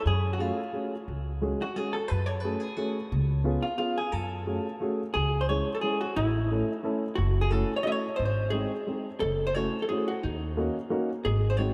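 A bittersweet, whirling musette waltz in 3/4 at 177 BPM with a light swing, moving from F# harmonic minor into C# harmonic minor at 5.2 s, cut from a longer piece. A clean, compressed hollow-body electric jazz guitar carries the picked melody up front, while a woody pizzicato upright bass with steel strings sits equally forward and a mellow, intimate upright piano adds vintage accompaniment with audible action noise. The whole performance is bathed in a cathedral reverb that places it in a vast, echoing space.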